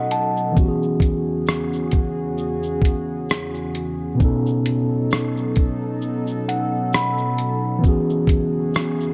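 A mellow tine electric piano and a warbly, tape-like pad open this short, nostalgic lo-fi hip hop excerpt together, with the sampler-style drum kit joining at 0.1 s. At a relaxed 66 BPM in 4/4 with a light swing on the sixteenths, the piece sits in E major, tuned slightly low to A4 = 438 Hz, and moves between B7 and E69 chords. The drums are compressed, pitched down and muffled, with a thumpy kick, hi-hat, rim click and shaker sitting up front with a tape-warm character. The electric piano, clean and heard as if through built-in speakers, carries the accompaniment through a cassette tape colouring and adds a fill from 6.0 to 7.8 s. Beneath it, the pad holds sustained chords with a detuned sawtooth-and-triangle blend, slow attack and long release, warbling through chorus and its own reverb. A moderate spring reverb with a 2.8-second decay gives the room a gentle, hazy depth.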